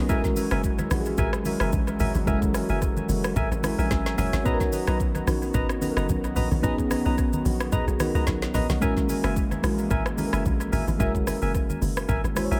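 Amapiano at 110 BPM with a gentle 16th-note swing, this warm, soulful excerpt moves from F#9 to Bmaj7 and back as a round, dark FM electric piano with chorus, phaser and tape echo carries the accompaniment over a detuned sawtooth pad pumping in the background, a tight, punchy log drum bass, hollow organ-like stabs trailing tape echo, an up-front deep house kit of deep kick, woody snare, smooth hats, rim click and shaker, and very quiet, close, low-tuned congas, all set in a light reverb within an echo-heavy mix.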